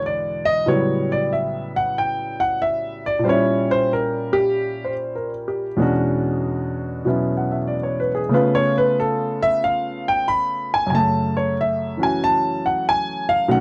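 A dry, close 1970s-style studio sound with a faint mains hum frames this playful solo jazz piece, where a concert grand sits up front with deep bass and audible action noise, swinging loosely with rubato through rich extended chords from E9 to F#m7 across its 13.6-second span.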